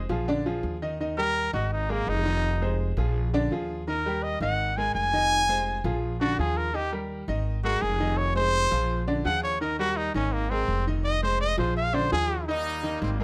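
This joyful, danceable Latin excerpt in Eb major opens with a bright upright piano, woody upright bass and a brief touch from a tight trumpet section, all at a brisk 167 BPM in straight 4/4. The piano, brilliant with short sustain, carries the accompaniment throughout, while the dark, thumpy pizzicato bass with gut strings holds down the low end. At 1.2 seconds a clear trumpet takes the lead in a pop-style solo with vibrato, ranging up to Ab5 and sitting up front in the mix. Beneath it the harmony cycles through Eb, Absus2, Fm7 and Bb7, with an Abadd9 appearing late in the pass. As the solo ends at 12.5 seconds, the trumpet section returns with a soft attack and light vibrato to close on Eb. Close, detailed microphones and light reverb keep the sound intimate and crisp.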